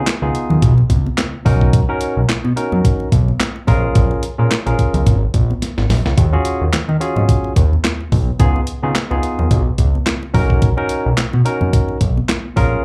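A fat, thick analog bass with a sawtooth-and-square-wave tone, fast attack and a moving notch sits up front in this danceable early-eighties boogie funk excerpt at 108 BPM, riding a swung 16th-note feel through chords such as Db9, Bmaj7, Bbm7 and Ebm11. A thumpy, sampler-style 12-bit drum machine with handclaps, hi-hat and a medium-tuned snare drives beside it, breaking into a short fill at 5.6 seconds, while a barky, lightly overdriven tine electric piano with slapback echo provides accompaniment through a combo amp. High-tuned, hard-handed congas with their own slapback sit in the background, and the whole performance comes through a venue's PA at a live gig with a touch of club reverb.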